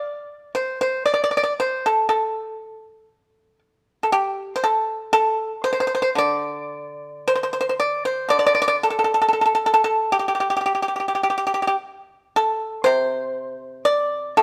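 A dry, percussive pipa sits up front in a moderate stone-room reverb, playing a solo Chinese traditional line with fingerpicks in a free, rubato 2/4 across a range from A2 to D5, elegant and longing over this 14.4-second fragment of a longer piece, with a new section arriving at 8.3 seconds.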